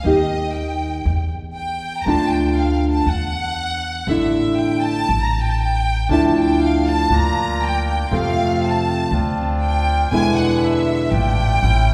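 A rubato 4/4 pulse around 120 BPM carries this tense, melancholic tango fragment in D minor, with a bowed violin section taking the featured line throughout, full of vibrato and expressive portamento. A thumb-plucked nylon-string guitar with fresh strings adds warm classical accompaniment until 11.1 s, and a woody, dark pizzicato upright bass anchors the low end, while a reedy, bright bandoneon enters with stabs at 6.1 s. The violins, guitar and bass sit up front yet are heard from further back in a wet scoring-stage reverb, as the chords move through shadowy suspensions before resolving via E7 to Dm/A.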